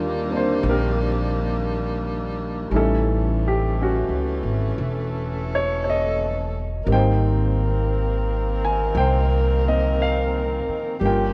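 Slow swung eighths at 58 BPM in 4/4 set an unhurried jazz ballad pulse, smoky and wistful in mood, across this brief cut from a longer piece. An upright bass plays pizzicato in its low register, woody and growly with steel strings, sitting up front as the loudest voice from start to finish. A baby grand piano supplies natural-sounding accompaniment in the middle range, while a saxophone section holds sustained chords alongside it with vibrato, soft attacks and a present, ensemble jazz voicing. The harmony moves from Ebmaj7 to A7#11 at 2.7 seconds and settles on Abmaj9 at 6.9 seconds. All three parts play throughout the 11.3 seconds, wrapped in a light reverb that gives the group a warm, intimate glow.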